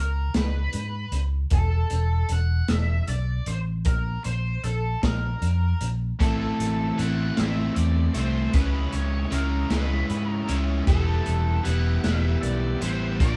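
A dark, fuzzed-out lead guitar with wah and distortion opens this hypnotic, mysterious psychedelic rock passage, carrying the melody over a round, amped fingered bass from the first moment. At 0.3 seconds a crunchy breakbeat kit joins, its punchy kick, medium-tuned snare and hi-hat sounding saturated and gritty with a rolled-off top, sitting up front alongside the bass. The pulse moves at a slow 51 BPM in 6/8 with a straight feel, while the harmony shifts through power-chord roots on C#5, E5 and Bb5. At 6.2 seconds a double-tracked, compressed overdriven guitar riff enters up front, and a buzzy vintage combo organ with light vibrato holds clean sustained chords in the background as the progression turns to Amadd9, C#madd9 and Emadd9. The band plays live together in one room with moderate studio reverb, and the recording is cut from a longer piece.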